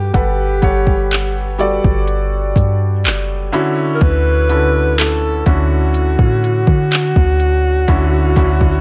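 A dreamy, tender contemporary R&B excerpt in D major at 62 BPM opens on Gmaj9 with a vibrato-laden, jazz-style alto saxophone melody carrying tape echo over a muted, mellow, intimate felt-muted upright piano with audible action noise and a deep, round 808-style bass, joined at 0.1 seconds by an up-front electronic drum kit of soft kick, crisp hi-hats and handclaps with overdrive, before the harmony moves to Dmaj9 at 3.5 seconds in a studio ambience.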